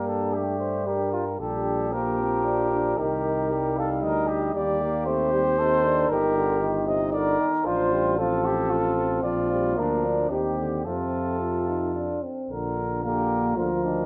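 In a rubato 3/4 at 114 BPM, this triumphant, noble brass quintet excerpt settles into Bb major by 6.1 seconds, with an up-front trumpet carrying the melody with dark vibrato and a smooth top, a distant flugelhorn on the second line, mellow French horn and a brilliant trombone in the background supplying accompaniment, and a bass trombone with light vibrato anchoring the low end, all heard in a wet recital hall reverb.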